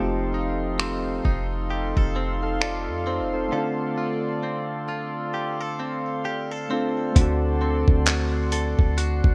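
Moody and sensual, this short contemporary R&B excerpt rolls along on a swung sixteenth-note feel within a bright 1980s-style digital production. Soft electric-piano-like synth keys, round and gentle with a ring-modulated, filter-swept tone and chorus, carry the accompaniment, while a shimmering, retro pulse-width pad holds sustained chords with sidechain pumping. A clean, direct-recorded electric guitar picks twangy arpeggios through subtle chorus and digital delay, and a deep, sine-like 808-style bass sits up front. At 0.8 s a gritty, sampler-style drum kit arrives with finger snaps, handclaps, hi-hat and a thumpy, overdriven kick, dressed in gated reverb. The harmony moves from F7 to Dm7, then shifts to D7 at 7.2 s as a new section begins, with light digital ambience around the mix.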